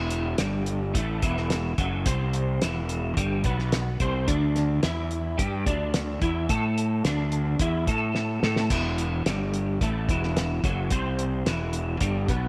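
A bright, compressed twelve-string electric guitar riff through a rotary speaker leads this trippy, dark psychedelic rock excerpt in E minor at 108 BPM, over a punchy, fuzz-overdriven fingered bass and an up-front, cloth-damped, thuddy drum kit with a fat snare, tight kick and rolled-off top, as the harmony moves from Em to Dsus2 and back, with a drum fill at 8.2 seconds and light reverb around the room.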